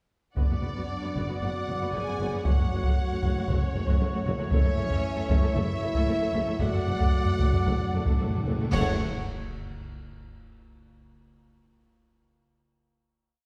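Up front and saturated, a compressed taiko ensemble pounds a big drum ostinato beneath this dark, relentless epic orchestral film cue in F# minor at 115 BPM, where lush bowed violins carry the theme over driving viola and rich cello ostinatos, woody double basses, a quiet tuba, warm French horns, a dark trombone section and trumpet stabs, while timpani roll in from 2.5 s and bright cymbal swells, crashes and concert bass drum strokes join at 4.5 s before a band accent lands on the final F#m chord at 8.7 s in a scoring-stage reverb heard from further back.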